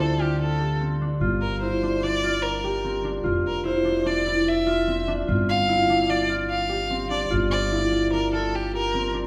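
Set in an odd 5/4 metre at a brisk 148 BPM with a straight feel, this short cut from a longer contemporary instrumental piece in G dorian feels urgent yet pensive. A single bowed violin carries the melody up front, its rich, smooth tone held even and touched with vibrato as it moves between G4 and F5 before falling silent at 9.1 seconds. Beneath it, a concert harp plays thumb-plucked arpeggios in a close middle range, its ringing, warm voice sitting forward in the mix. An upright bass anchors the low end with pizzicato steel strings, giving a woody warmth to the harmony as it moves from Dm7 to Gm7 and then to open F5 and G5 sonorities. Everything is heard in a wet recital hall whose reverb of about 1.7 seconds lends the trio a spacious, church-like glow.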